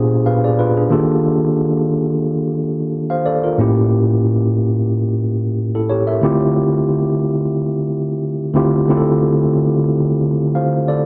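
A lone mellow tine electric piano opens this smooth, silky soul fragment, playing clean and up front through its built-in speakers over a gently swung 4/4 feel. It moves through rich altered and extended chords, from Bb7b9 and Ebmaj9#11 to A7b9, settling on Dm11 at 6.2 seconds before the piece breaks off at 11.1 seconds. Light reverb and digital ambience surround a dark, warm production.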